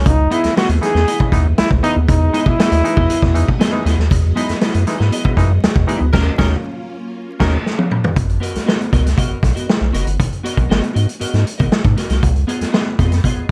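A straight 4/4 funk groove at 118 BPM sets a sly, funky mood in G# minor in this cut from a longer piece, driven by a vintage drum kit up front, saturated and gritty with dark cymbals and a tight kick, beneath a bouncy, hollow square bass with a rubbery filter pluck and a moving notch. A brilliant trombone opens with a forceful, jazz-style melody full of scooped notes and light vibrato, then drops out at 3.5 s. Meanwhile a clean, picked electric guitar with analog chorus, percussive clav stabs through a combo amp, and a very quiet, swirling string machine with phaser and ensemble chorus fill the harmony over C#m9, Emaj7 and D#m7. At 6.1 s the band hits an accent while a raspy, edgy tenor saxophone adds a brief second line in the background, and a drum fill leads into the next section at 8.2 s, where the chords move through G#m9 and C#9. The production is dark and warm, with light reverb and a layer of vinyl crackle.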